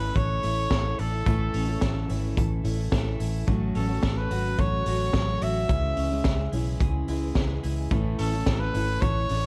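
Nostalgic and breezy, this short excerpt of jangly indie pop moves at 108 BPM in A major, cycling through A, F#m and C#m. A brilliant, punchy trumpet carries the melody with light vibrato over a boxy, fresh-stringed parlour acoustic guitar and twangy twelve-string electric arpeggios touched with spring reverb. Beneath them sit a round, foam-muted vintage bass and a gritty, saturated garage drum kit with a high-tuned snare that enters at 0.2 seconds, all wrapped in a dark, lightly reverberant production.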